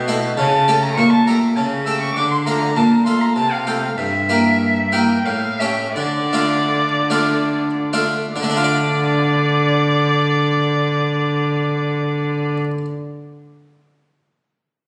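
Flowing and solemn, this baroque-style sonata movement in triple time moves with a rubato feel, easing into a slowdown between 3.1 and 8.4 seconds before a second section begins. A brilliant, dry harpsichord with octave strings supplies the continuo alongside a smooth, even cello bass, while a single bowed violin carries the high melody with vibrato and portamento, sounding expressive and distant. Captured on a phone in a reverberant recital hall with added club reverb and compression, the passage is cut from a longer piece.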